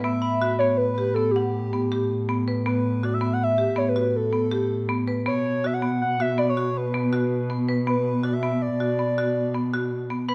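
Close, detailed microphones in a moderate recital hall capture this excerpt of contemporary chamber music in 7/4 at 161 BPM, set in A mixolydian with a shimmering, playful mood. Up front, a pure, round sine lead with chorus, phaser and vibrato carries the melody over bright, woody marimba arpeggios struck with hard mallets, while a muted cello, bowed con sordino by one player, holds a dark, veiled bass line. A metallic, bell-like glockenspiel rings briefly from 0.2 seconds and returns at 10.3 seconds, and the harmony moves from Asus2 to Bm at 5.3 seconds.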